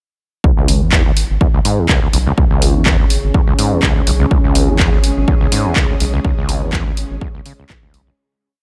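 A four-on-the-floor kick at 124 BPM, set in a swung 16th-note groove, drives this short, raw and hypnotic acid house piece in C# minor, with tape-saturated drum-machine handclaps and hi-hats alongside. Up front, a squelchy, distorted acid line with accents and slides runs through a filter sweep, carrying 12-bit sampler grit and sidechain pumping over a round, syncopated square-wave bass riff. A moody, chorused ambient pad drifts in at 2.3 s and lush string-machine chords follow at 4.3 s, both sidechain-pumped in the background as the track fades out from 5.6 s.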